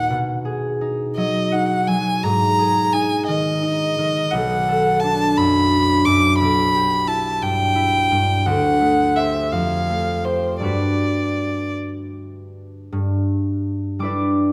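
A smooth, close violin with vibrato opens this pastoral, dreamy impressionist duo alongside a ringing, fingerpicked concert harp, both placed up front in a moderate stage reverb and moving in a rubato 6/8 at about 52-59 BPM in dotted quarters. Lush, colourful chords such as Bm7, D11 and Gmaj7 drift under the bowed melody as the music settles into G major from 4.3 s. The violin falls silent at 11.8 s, and the harp carries on alone until 14.5 s, where this fragment of a longer piece breaks off.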